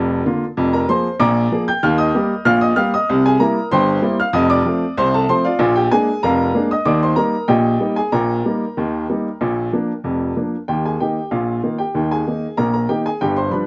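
A clear upright piano carries this lively, playful ragtime on its own, sitting up front with a woody, open tone. The piece moves in a straight 2/4 at 95 BPM in E-flat major, tuned slightly high to A4 = 442 Hz, and the piano ranges from F1 up to G6. Its harmony runs through Bb, Bb7/F, Eb, C7, F7 and Bb7 before settling back on Eb, then shifts into a new section at 10.7 seconds that opens on Eb. The sound is a dry, close 1970s-style studio recording with light reverb on the piano. This is a short cut from a longer piece, ending at 13.7 seconds.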